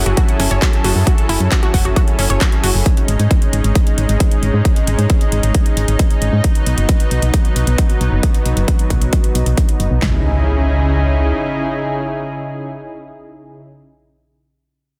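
A dense, heavily limited modern master with little reverb carries this driving, bittersweet uplifting trance at 134 BPM in C# minor, where a thick, airy, bright unison pad with chorus and sidechain pumping sustains chords moving from F#m7 through G#sus4 and B to C#madd9, a round, dark FM bass pumps up front, a warbling, vintage-tinged detuned pluck spins arpeggios through tape echo until 2.7 s, and a layered big-room dance kit drives with a punchy kick and snare, handclaps and metallic, pumping hats until the drums drop out near 10.1 s, leaving the pad, the bass until 11.3 s, and a background electronic impact that arrives at 10.0 s.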